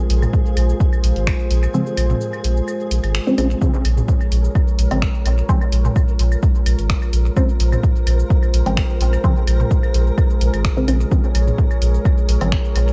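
A round sine sub bass sits up front beneath a punchy kick, a filtered sawtooth dub chord stab with phaser and echo, and a dark, detuned analog pad holding a Bbm7 chord with chorus, the bass, stab and pad all pumping to the sidechain, while a flickering granular texture, deep house snaps, hi-hat and shaker, and tape-warm electronic toms and claves fill this meditative, hypnotic 128 BPM dub techno excerpt in Bb minor, the kick dropping out from 1.7 to 3.6 seconds as a filter sweep runs across the stab throughout.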